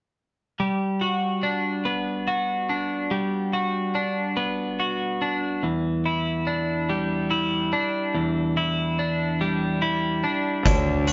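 A bright, twangy twelve-string electric guitar picks clean arpeggios over Gmaj7 and Em7 from 0.6 seconds in this melancholic, brooding post-rock excerpt in a straight 6/8, until at 10.7 seconds a growly fuzz bass, a gritty, oversized low-tuned drum kit with a punchy kick and hi-hat, and a soft, boxy felt-muted upright piano in the background join briefly, the band captured live in a stone room with a dark, rolled-off top end.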